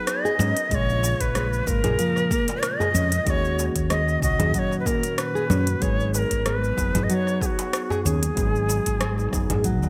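Earthy and hypnotic, this organic downtempo excerpt sets a bright, reedy cedar flute with vibrato and digital delay up front over muted, felt-like synth keys with chorus, an overdriven electronic kit of cabasa, congas, crisp hats and rim click, dark thumb-plucked nylon-string guitar arpeggios with a vintage 12-bit grit, a round, punchy fretless bass with sidechain pumping, the deep layered kick arriving at 0.7 seconds, and a background darbuka, all moving through G#m7, A#m7 and D#m7 in a moderate plate reverb with a bright 1980s-style digital sheen.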